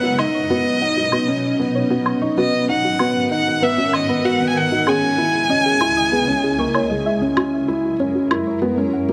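A rich, distant violin with vibrato and portamento sings a delayed melody up front over a mellow felt-muted upright piano riff, a blurred granular cloud pad and a soft, round arpeggiated pluck with chorus and a filter sweep, while a tape-warm woodblock enters at 0.2 seconds in this hypnotic, moving piano-and-strings electronica piece at 96 BPM, the violin falling away at 7.1 seconds just before a build-up over F#7 begins at 7.4 seconds, all set in a huge ambient reverb.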